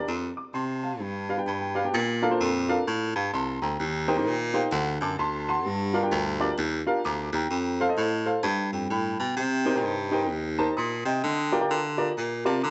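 Uptempo gospel at 129 BPM in B-flat major with a swung feel, reverent and uplifting, this cut from a longer piece sets a woody, slightly detuned vintage upright piano with long sustain, which adds fills at 1.2 and 4.3 seconds, against a clear, punchy baritone saxophone that carries the bass line with forceful jazz-style scooped notes and light vibrato, both up front in a moderate large-studio reverb with softened highs.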